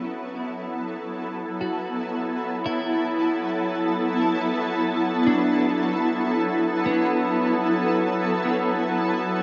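A shimmering, ethereal pad fills this short ambient excerpt from the start, holding sustained chords up front with a bright, detuned glow and an octave-up shimmer that gives its tone a granular sparkle. Beneath it, a clean semi-hollow electric guitar picks arpeggios in the background from the first moment, its hollow-body tone rounded by lush chorus and a diffuse ambient delay before it stops at 8.9 seconds. From 0.9 seconds an airy, breathy noise layer enters, a wind-like tuned texture sitting high and soft behind the other parts. The harmony rests on a Bm9 chord before settling onto B5 near the close. Soaked in a huge, wet reverb with a cassette-tape character, the mix feels spacious, serene and dreamy.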